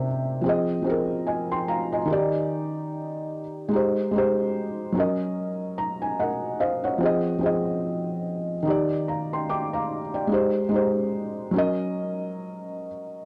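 A dry, gritty hardware recording in a moderate studio room frames this melancholic, reflective hip hop passage, cut from a longer piece, where a lone felt-muted upright piano sits up front with a dark, thick-felt tone, audible action noise and short sustain, softened further by a low-pass filter, as it circles Fm7, Ebmaj7, Abmaj7 and Gb6 with a swung sixteenth-note feel and slips in brief fills at 0.0 and 5.4 seconds.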